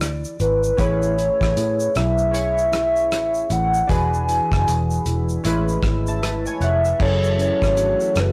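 Indie bedroom pop with a sunny, hazy mood and a lazy swing, cut from a longer piece, where a warbling, nostalgic square-and-saw lead carries the melody from 0.4 seconds over a round, foam-muted picked bass, a dry, tight-kicked 70s drum kit with rim clicks, shaker and hi-hat, a dark, clean fingered electric guitar with vibrato tucked in the background, glossy chorused retro synth keys entering at 0.8 seconds, and a hollow, flute-like pad arriving at 7.0 seconds, all captured in a rough rehearsal-room recording with light reverb and saturation.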